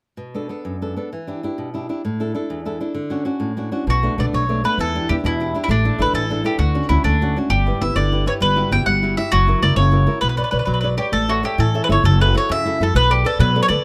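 Swaying in a rubato 6/8 lilt, this passionate, wistful Italian folk serenade opens with a bright, fingerpicked flamenco guitar playing alone in the lower and middle registers. At 3.9 seconds a picked bowl-back mandolin enters with the melody, its doubled strings glowing through plate reverb, while a woody, dark pizzicato upright bass on steel strings joins underneath. The close, detailed recording keeps all three acoustic instruments up front in a lightly reverberant room, and this fragment of a longer piece moves through minor-key chords, including a suspension and a dominant-seventh colour, before settling back home.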